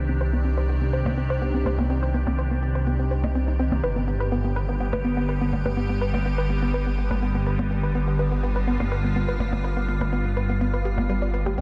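Melodic techno with a melancholic, dramatic mood, where an evolving, bright wavetable pad with chorus, phaser and built-in reverb holds sustained chords shifting from Cmadd9 to G at 3.8 seconds, a woody wave-folded pluck with chorus, cassette tape and diffuse ambient delay plays arpeggios, a menacing detuned saw bass swells up front with saturation, and very quiet electronic hi-hat and percussion blips enter at 0.1 seconds, all set in a dreamy mix soaked in huge ambient reverb.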